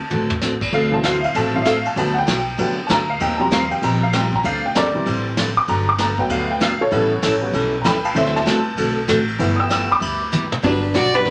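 Down-home and swinging, this western swing country excerpt features a jangly, detuned honky-tonk upright piano soloing over bright picked steel-string acoustic guitar, growly pizzicato upright bass and a vintage brush drum kit with dark cymbals and short fills, until a clear, bowed fiddle and a clean hollow-body jazz guitar join at 10.6 seconds, all set in a wet studio ambience.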